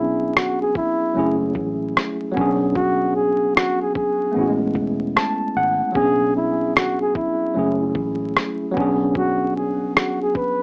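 A swung 75 BPM lo-fi hip hop groove in B dorian sets a muffled, pitched-down sampler kit of thumpy kick and rim click, entering at 0.4 s, over a dark, foam-muted fingered electric bass. This melancholic, nostalgic break is cut from a longer piece. A worn, slightly out-of-tune tine electric piano, lightly overdriven with cassette tape colour and plate reverb, comps through Bm69, F#m9 and Amaj9 chords and adds a short fill at 4.8 s, while an intimate, breathy flugelhorn sings a jazz-style solo melody with vibrato and scooped notes, all set in a small room with vinyl crackle and a small-speaker tone.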